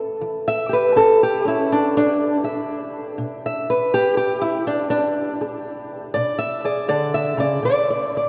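A fingerpicked old ladder-braced acoustic guitar opens on an A7 chord and settles onto E7 at 1.7 seconds, its dark, woody, boxy tone and old strings sitting up front in this short excerpt of swaggering, gritty acoustic country blues. The solo guitar swings at an unhurried 81 BPM in 4/4 in E mixolydian, ranging from B2 to E5 before the harmony falls away at 7.6 seconds. A church or concert hall wraps the playing in a long cathedral reverb that lingers well beyond each note.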